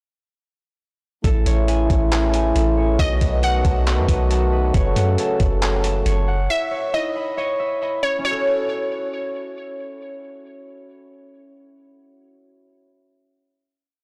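A sparse half-time beat at 137 BPM in 4/4 comes from a muffled, pitched-down lo-fi sampler-style drum kit with a thumpy kick, hi-hat and handclaps. A soft, round 808-style bass plays long sub-bass notes that follow the kick with pitch slides, and a mellow French horn section holds a sustained pad with sidechain pumping, these three parts starting together at 1.2 s. This ethereal, melancholic atmospheric cloud-rap piece in F# dorian moves through Amaj7, B7, F#m and C#m7, with a ringing concert harp looping thumb-plucked arpeggios through delay from 1.2 s and a glassy, crystalline wavetable pluck repeating a sparse melody with chorus and delay from 3.0 s, all under light reverb and a blown-out, overdriven sound until the verse gives way to a final chord at 8.2 s.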